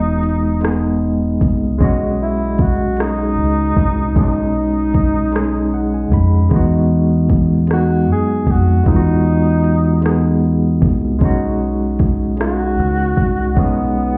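Heard muffled as if through a wall and set in a stone-room reverb, this intimate, slow six-eight R&B piece at 51 BPM in B major carries a breathy, whispered tenor saxophone melody with scooped notes and vibrato, wrapped in slapback echo and plate reverb, over a barky, up-front tine electric piano colored by medium tremolo that adds a fill at 5.3 seconds, a deep, round dub bass played with the fingers, and a tape-warm electronic drum kit of hi-hat, soft kick and rim click, as Emaj9 and B6 chords alternate.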